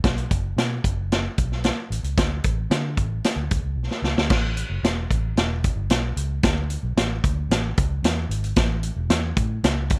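Uptempo 1960s-style soul at 112 BPM in A major, a warm, danceable groove cut from a longer piece, played by a vintage drum kit and a foam-muted fingered electric bass. The drums sit up front with a punchy kick, medium-tuned snare, hi-hat and dark crash cymbals under a rolled-off top, while the bass is round and amped, ranging from E1 to D3 somewhat lower in the mix. The dry recording carries little reverb, and a drum fill from 3.8 to 4.3 seconds leads into a new section.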